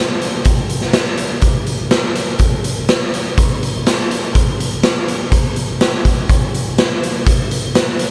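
Rock excerpt at 124 BPM in a straight 4/4, carrying a kaleidoscopic, hazy mood. The only part is a raw garage drum kit, playing from 0.2 s to 8.1 s, built from hi-hat, kick drum and snare drum. The acoustic kit sits up front, with a punchy kick, a medium-tuned snare and a saturated, gritty character whose top end is rolled off. The kit sounds captured in a bright stone room with a pumping quality. A moderate, huge ambient reverb with an RT60 of 5.3 s adds to the hazy atmosphere.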